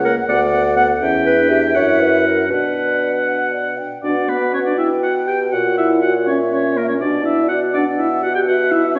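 An airy, hollow concert flute with vibrato carries the melody in this cheerful, lively excerpt from a quick classical-period movement for wind quintet in B minor, 6/8 at 81 BPM with a rubato feel, as a clear oboe with light vibrato enters at 0.1 s on a second line above punchy clarinet and smooth-topped French horn accompaniment and a mellow, roomy bassoon bass, the ensemble set in a wet recital-hall reverb with a dulled top end.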